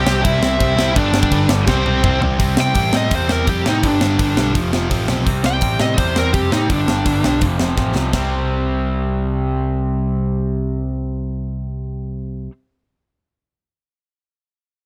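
Rowdy and rebellious, this punk rock excerpt charges along at 167 BPM in a straight 4/4, centred on C major and cut from a longer piece. A dark, high-gain lead guitar sits up front with a distorted melody and takes a solo from 2.4 to 8.1 seconds, dropping out at 7.4 seconds. Beneath it, a bright, hollow-bodied semi-hollow guitar pounds out a double-tracked overdriven riff for the whole clip, joined at first by a sludgy, warm distorted guitar that stays in the background and stops at 5.3 seconds. A growly, amped electric bass adds picked low-end grit, while a tight metal drum kit with airy, polished sound, bright cymbals, a high-tuned snare and a tight kick drives the tune, rolling through fills before the solo and again just before it stops at 8.2 seconds. The chords cycle through C, G and F with very little reverb, leaving the mix dry and in-your-face.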